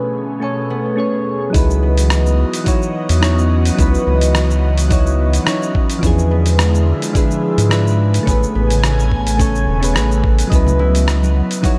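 An airy, breathy pad with chorus and phaser, soft and mellow electric-piano-like synth keys, and a ringing concert harp under a filter sweep open this relaxed, smooth sunset chillout excerpt in C# minor at 107 BPM, moving through rich chords like Amaj9, C#m11 and E7b9. At 1.5 seconds a round, deep analog bass arrives up front alongside a gritty, thumpy electronic kick and a dusty soul sampler-style kit of hi-hat, rim click and shaker, swung lightly on the 16ths and sounding re-recorded in a small room. Congas join in the background at 10.7 seconds, all within a dark production with light reverb.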